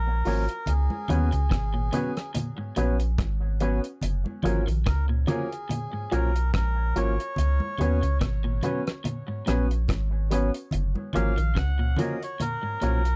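The round, sine-like sub bass sits up front and carries this laid-back, uplifting roots reggae excerpt, moving at 72 BPM in 4/4 with a gentle swing on the sixteenths in F# major. Above it, a reedy, breathy melodica with a nasal edge takes the melody through tape echo, while a twangy, scooped electric guitar run through an envelope filter provides bright, clean picked accompaniment, also echoed. A woody upright piano adds vintage stabs, and a second electric guitar, slightly broken-up, picks arpeggios from about 1.1 seconds. A damped 70s kit with a tight kick, hi-hat and rim click keeps a dry, rolled-off groove, joined at 0.7 seconds by ringing, medium-tuned congas sitting close but in the background. The harmony rocks between F#maj7 and C#7sus4 under a dark production with light reverb.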